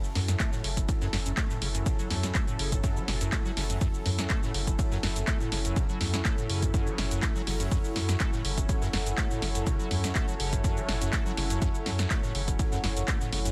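A detuned, chorused sawtooth pad with tremolo holds an F#m7 chord over a punchy analog drum machine of cabasa, handclaps, hi-hat and snare from the start of this hypnotic, gritty acid house excerpt at 123 BPM in F# minor with a slight 16th-note swing. It is joined at 0.2 s by a squelchy, resonant square-wave acid bass riff sitting in the background with cassette-tape colour, chorus and delay, a round sine sub bass, and a very quiet acoustic cocktail kit of hi-hat, dark ride and high-tuned snare. At 0.4 s an up-front dry electronic kick enters, and from 0.7 s a moody, evolving unison pad with built-in reverb settles in. Both pads and both basses breathe with sidechain pumping inside a dense, heavily limited master with light small-room ambience.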